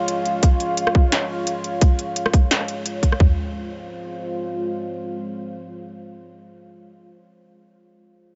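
A swung half-time drum and bass beat enters just after the pad in this cinematic, spacious fragment, with an overdriven electronic kit of tight kick and toms up front beside an industrial kit of clanging snare, rim clicks and crisp hi-hats, both stopping by 3.3 s, while a deep, moody ambient pad of detuned sawtooth and sine voices with a sub octave, wave-folding, ring modulation, chorus, reverb and sidechain pumping holds slow-attack chords moving from Db to F minor from the very start until 6.7 s, all set in light reverb with a dark, rolled-off top end.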